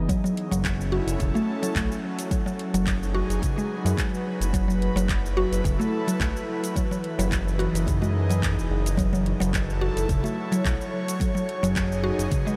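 Meditative and hypnotic, this organic downtempo excerpt moves at 108 BPM in 4/4 with a light 16th-note swing, set in F# dorian and tuned slightly below standard pitch. An airy, breathy pad holds sustained chords up front, its slow attack and long release colored by chorus, sidechain pumping and shimmer reverb. Beneath it, a smooth sawtooth-and-square synth bass sits forward in the mix with a moving notch and the same sidechain pumping, stopping at 12.3 seconds. A woody, round, mallet-like FM pluck spins arpeggios through chorus, phaser, tape echo and shimmer reverb. A deep, tape-warm electronic kick anchors the groove alongside a quieter afro-pop kit of cabasa, handclaps and metallic hi-hats. The harmony circles over an F# pedal from F#m7 through G#m7/F#, B7sus4/F# and Emaj7/F#, and the whole dreamy mix is soaked in a huge ambient reverb with a 7.5-second tail.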